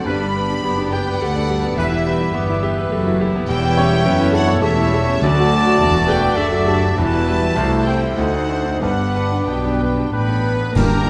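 A clear, up-front concert grand piano with deep bass carries the melody in this lyrical, passionate romantic movement for piano and orchestra in a rubato triple metre, joined by a pure, floating violin section on the high line. Behind them, a vibrato flute, a dark, distant cor anglais, a mellow clarinet and a very quiet, soft-attack violin section weave second lines, while sul tasto violas, cellos and a dark double bass section fill the accompaniment and bass, very quiet French horns hold roomy chords and a bright trumpet section adds stabs. Hard-mallet timpani strike at 5.2 s and return with bright clash cymbals and concert bass drum for an accent at 10.8 s, all set in a moderate scoring-stage reverb with close, detailed microphones.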